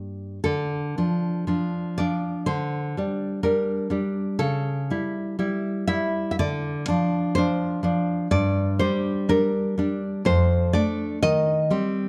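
Melancholic and intimate, this romantic excerpt for solo nylon-string guitar moves at a rubato 61 BPM in 2/4, its full-bodied, fingerpicked tone sitting up front with audible finger squeak in a dark production and moderate recital-hall reverb, as it passes from D minor into G minor at 8.3 seconds.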